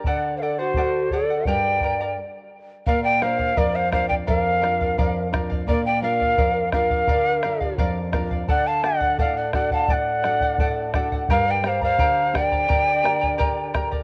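Wistful and melancholic, this Andean folk piece moves at an unhurried 85 BPM in a straight 2/4, cut from a longer performance. A breathy, mellow cane quena carries the melody up front, its vibrato and crisp, chiffy attack rolled off at the top. A polished wooden pan flute adds an airy, tongued second line. Underneath, a shimmering fingerpicked charango with double strings and a dark, full-bodied nylon-string guitar, complete with finger squeak, supply the accompaniment, while a round, dry bombo sits close. The harmony moves from D to G minor, and after a brief stop at 2.2 seconds, a new section opens on Bb at 2.9 seconds before returning to D and G minor. Light reverb and small-room ambience frame this home cassette recording, with a tape tint on the flutes and strings.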